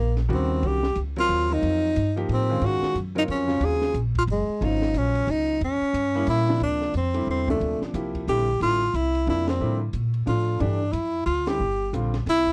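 A close-miked tenor saxophone with light vibrato carries the melody up front in this cool, hypnotic modal jazz waltz with a swung feel, cut from a longer piece, over a woody, thumpy gut-string upright bass, a clear baby grand piano with long sustain, and a dark, smooth cocktail drum kit with a high-tuned snare and punchy kick, captured in a dry, close 1970s-style studio sound with light reverb, as the harmony shifts at 6.6 s and the band strikes accents at 9.4 and 11.4 s.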